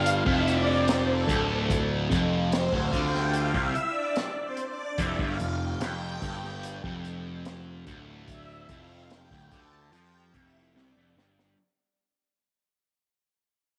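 A crunchy breakbeat drum kit drives a straight, unhurried 4/4 at 73 BPM, its punchy kick and high-tuned snare sounding gritty and dark beneath a rolled-off top, with a drum fill from 10.8 to 11.6 seconds. An overdriven picked electric bass and a bright, double-tracked fuzz guitar riff with phaser play from the outset alongside a lush, vintage string machine ensemble, whose mellow, chorus-washed sustained chords on Fsus2/D carry the solo and sit up front alongside the guitar. This trippy, mysterious psychedelic rock fragment fades out from start to finish, bathed in a moderate spring reverb.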